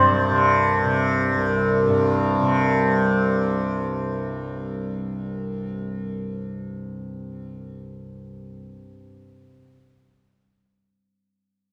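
Indian classical music in a meditative, introspective mood, taken from a longer piece and moving at 170 BPM in a straight 4/4. A tanpura sits up front as the drone, softly plucked and buzzing in the low register between C2 and C3, sounding from the start until 9.5 seconds. A hammered santur carries the melody in the background, its shimmering, ringing tone kept within a narrow span from C5 to D5. The santur is heard only briefly, from the opening until 2.4 seconds, after which the tanpura sustains on its own. The players perform together live in one room, with a moderate studio reverb lending a gentle sense of space, and the tuning rests at A4 = 439 Hz.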